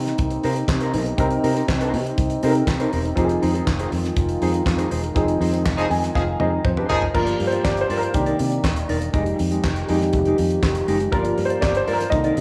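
A dark, worn grand piano, a fingered electric bass and a distant French horn section holding sustained chords open this sultry, glamorous disco excerpt in C minor at 121 BPM, with a mellow, clean electric guitar and a damped 70s drum kit joining at 0.1 seconds. The drums sit up front with a fat snare, a tight kick, dark cymbals, hi-hat, toms, crash and handclaps, while the foam-muted bass stays round and direct under the piano's intimate tone, its action noise audible and its notes short in sustain. Harmony moves from Cm7 to Fm7, and around 5.2 seconds the band hits an accent, with a punchy pop-style horn section playing stabs from 5.8 to 7.1 seconds alongside a piano fill and a drum fill that carry into the next section. From 7.1 seconds the piano takes a solo over Gm7, Cm9, Fm9 and back to Gm7, the roomy French horns lingering in the background. A moderate large studio reverb lends the whole a polished, glamorous sheen.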